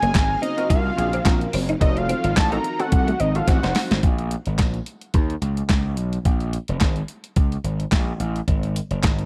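A dry, close-sounding slice of slick, funky early-eighties boogie funk with a swung sixteenth feel. Up front, a detuned 8-bit drum machine with a thumpy kick, handclaps, hi-hat and snare drives along beside an overdriven, gritty slap bass. For the first 4 seconds, a fat, nasal analog lead with vibrato and tape echo carries the melody over shimmering string-machine violins, a twangy clean electric guitar riff in the background, and a punchy, filter-plucked polysynth comp that enters at 0.6 seconds; after a drum fill at 3.5 seconds, drums and bass carry on alone.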